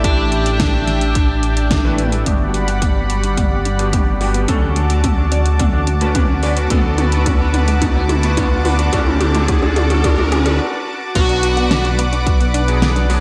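Synthwave at 108 BPM, driving and cinematic, cut from a longer piece: a deep, rumbling detuned saw bass sits up front with a punchy layered electronic kick, while a pop drum kit with a fat snare, metallic hats, toms and crash cymbal rides gated reverb, under a thick, warbling unison pad and clangy electric grand piano stabs that take a filter sweep from 2.3 s. A dark, overdriven lead guitar picks a brief melody at the start, then at 2.3 s a punchy unison pluck arpeggiates with digital delay in the background, a very quiet double-tracked crunchy guitar plays a riff, and a drum fill and background riser run up to a break at 10.6 s. At 11.2 s the lead guitar returns over a shimmering, very quiet string machine line on a Bm chord, all set in a lush hall reverb with bright 1980s-style digital production.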